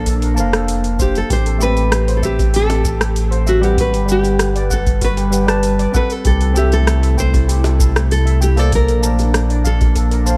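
A round, deep sub bass sits up front in this smooth, relaxed sunset chillout excerpt at 97 BPM in 4/4. It underpins a progression that moves from Bbmaj9 through Am9, Gmaj7 and C6 before returning to Bbmaj9. Over it, a full-bodied, fingerpicked nylon-string guitar carries the melody with a touch of delay, while a worn, slightly out-of-tune tine electric piano plays accompaniment through a combo amp with digital delay. In the background, an airy, breathy pad with chorus holds sustained chords, and a shimmering steel pan plays arpeggios with digital delay. The beat comes from a tape-warm electronic kick and a layered deep house kit with overdriven metallic hi-hat, rim click and shaker, both set in a small room ambience. Very quiet, high-tuned bongos join at 2.4 s, and light reverb ties the parts together.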